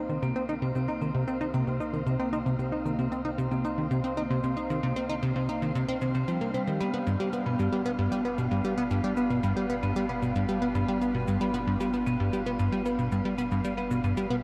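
Ambient, sequencer-driven space music with a mysterious, cosmic mood, this excerpt is led by an up-front, punchy and funky plucky analog bass riff with tape echo, joined by ringing, metallic vibraphone arpeggios, a very quiet swirling, phased analog pad holding sustained chords, an airy, breathy wind-like tuned noise texture, and a deep, round sub bass and electronic shaker and toms that both fade in across the full 14.4 seconds, all wrapped in a dark production with a wet shimmer reverb as the harmony moves from Cm7 to G7 at 6.8 seconds.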